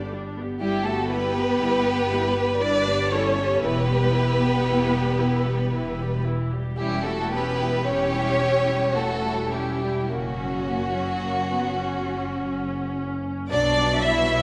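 A wet scoring-stage reverb surrounds this excerpt from a longer classical movement for string orchestra, melancholic and yearning in a rubato triple metre. A lush symphonic violin section carries the melody with smooth vibrato, while an expressive, close chamber violin section plays a second line and distant, even violas provide accompaniment. Both the second violins and a rich double bass section sit up front, the basses sharing the low end with a clear, focused studio cello section as the harmony moves from G through Em and C#dim/E to F# before settling on B5 at 13.5 seconds.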